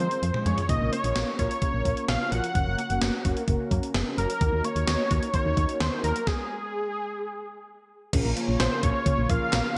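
A bright, 1980s-style digital production sits in a lush hall reverb, with a gated drum machine up front delivering a thumpy kick, gated-reverb snare, handclaps, hi-hat, toms and crash, opening on a fill. This melancholic yet driving synth-pop cut in Bb minor moves at 129 BPM in straight 4/4, led by a thick, nasal, warbling unison lead with vibrato over punchy, round FM bass, a brassy synth accompaniment with chorus, and a very quiet, squelchy resonant pluck spinning arpeggios through a phaser. After a stop at 6.3 s, an airy unison pad with chorus and phaser enters in the background at 8.1 s as the harmony returns to Bb minor.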